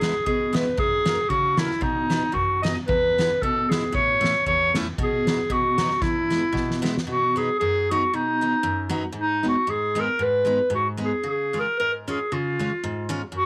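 A dry cut from a longer festive alpine folk dance tune at 116 BPM in a bouncy, lightly swung 2/4 with rubato, where an up-front, soft-attack clarinet carries the classical-style melody over a bright, full-bodied jumbo steel-string guitar with audible finger squeak, while a soft-mallet drum kit with a boomy kick and fat snare keeps time from the start, plays a fill from 6.0 seconds and stops at 7.1 seconds as the music moves from E major to B major, leaving clarinet and guitar together to the end.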